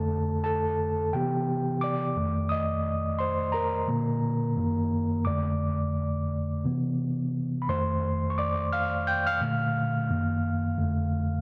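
Recorded at home on cassette with light reverb, this brief cut from a longer R&B piece sets a sensual, relaxed mood as a mellow, clean tine electric piano plays alone and up front through its built-in speakers, moving at 87 BPM in 4/4 with a swung sixteenth-note feel through F6, Cmaj9, F13 and Bbmaj7 chords across its 11.4 seconds.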